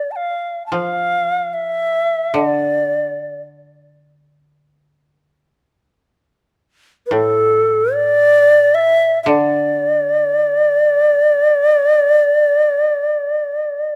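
Japanese traditional chamber music in free time and D minor, this meditative, still fragment of a longer piece places an airy, expressive long shakuhachi up front with tongued notes and vibrato across its melody from 0.0 to 14.0 seconds, while a mellow, woody koto played with fingerpicks sits lower and dry in the accompaniment from 0.7 to 12.6 seconds, all captured by close, detailed microphones in light reverb.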